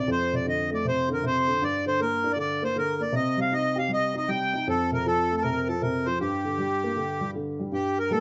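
Wild and spirited, this Celtic folk hornpipe in G minor, cut from a longer piece, swings at 157 BPM in 4/4 as a reedy, close-miked accordion with slow beating carries the melody up front while a dark upright piano, mellow and woody with long sustain, accompanies through F5, Gm, Cm, F and G5 chords, both playing throughout the 8.2 seconds in a small, wet room.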